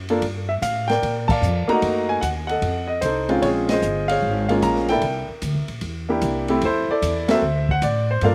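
Playful and relaxed, this short cut from a longer jazz piano trio swings in 4/4, with an up-front grand piano carrying the melody through a slapback echo over a woody, thumpy pizzicato upright bass on gut strings and a dark, smooth drum kit with a boomy kick and dark cymbals, all in a dry, outdoor-sounding space where the band hits accents at 1.2, 3.6 and 7.2 seconds across shifting jazz chords.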